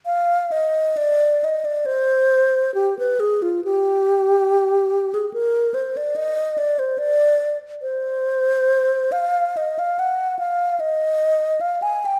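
A mellow wooden-headed alto flute, airy, close-miked and up front with vibrato and tongued notes, carries this meditative, yearning classical fragment alone in C minor, moving freely in rubato around 63-75 BPM in 3/4 from F4 to Ab5 within a moderate scoring stage reverb, cut from a longer piece and lasting about 12.2 seconds.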